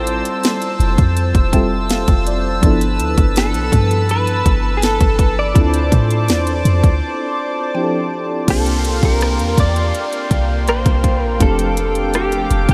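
A deep, boomy 808-style bass sits up front in this longing, late-night contemporary R&B excerpt, beneath a trap kit of hard-clipped kick, sharp snare, crisp hats, rim clicks and crash cymbal, with a break at 7.0 seconds. A clean, compressed electric guitar, picked and recorded direct through analog chorus and delay, carries the melody over a dark, full-bodied FM electric piano with tremolo and a shimmering, retro pulse-width pad, while a very quiet, woody mallet-like pluck enters at 1.5 seconds. An electronic downlifter arrives at 8.5 seconds as the harmony moves from Dm7 to C7sus4 and on to F69, and the dreamy mix is soaked in a huge ambient reverb.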